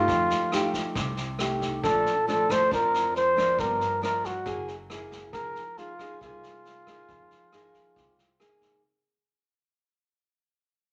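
A straight 4/4 bossa nova pulse at 137 BPM carries this intimate, melancholic fragment in F minor, cut from a longer piece and fading out across its full 8.8 seconds. Up front, a breathy, mellow flugelhorn takes the solo melody in a jazz style, with light vibrato and scooped notes between F4 and C5. Beneath it, a classical nylon-string guitar is fingerpicked, with audible finger squeak, while a woody pizzicato upright bass sits in the background. A vintage brush drum kit, entering at 0.1 seconds, offers a punchy kick, rim click and a medium-tuned snare with a rolled-off top. The harmony moves through F9, Bbmaj7, Gm7, Gb9 and Fm7, all set in a moderate large-studio reverb that gives the small group a sense of space.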